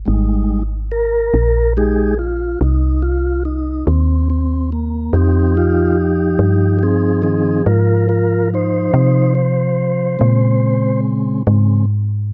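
Slow blues in F minor at 47 BPM in a 12/8 metre, this mournful, smoky fragment of a longer piece sets a woody, round FM bass with a dark, decaying tone against a mellow, flute-like tonewheel organ that carries the solo in sustained chords through a slow rotary speaker, both up front in light reverb as the harmony moves from Fm7 to Bbm7 at 10.2 seconds.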